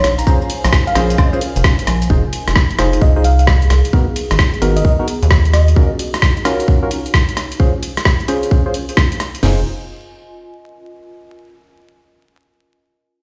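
Heard through a big sound system in a bare stone room with vinyl crackle and light reverb, this moody, bouncy two-step UK garage excerpt swings at 131 BPM in F phrygian. An up-front garage kit with a tight kick and cracking snare is layered over a gritty, compressed breakbeat kit of hi-hat, rim click, shaker and woodblock, while a rubbery, hollow square bass pumps underneath, joined by dark percussive organ stabs and a sparkling, bell-like FM electric piano melody with chorus, tremolo and delay. A warbling, lo-fi tape-like pad hovers in the background, and a soft, intimate chamber violin section plays only through the opening 2.1 seconds. After the breakbeat kit drops out at 9.4 seconds and the garage kit, organ stabs and a brief bass note finish at 9.6 seconds, the nostalgic pad lingers on alone until 11.2 seconds.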